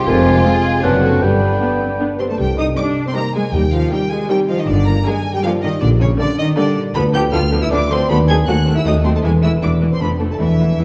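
A straight waltz-time lilt drives this sneaky, quirky, whimsical film cue, cut from a longer piece, where a woody, round marimba and lush bowed violins carry the melody over ringing harp arpeggios, a quieter second violin line, smooth violas, distant cellos, a mellow tuba and rich double basses, while a dark clarinet, hollow flute, clear oboe, bassoon and sustained French horn chords sound only within the first 2.3 seconds, inside a wet scoring-stage reverb.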